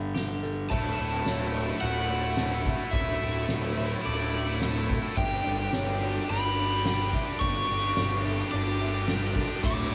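An up-front fuzz bass, round and overdriven, anchors this euphoric, soaring post-rock excerpt at 108 BPM in 4/4. A soft-mallet drum kit with a fat snare and boomy kick enters at 0.2 seconds, and from 0.7 seconds a crunchy overdriven guitar carries a high melody through analog delay above a bright, distorted guitar riff, as the chords move from Gsus2 to Dadd9 to G5 in a build-up set in a small room. In the background, a clean, twangy electric guitar and a mellow, felt-muted upright piano with audible action noise play delayed arpeggios, and a second overdriven guitar riff appears only at 9.6 seconds.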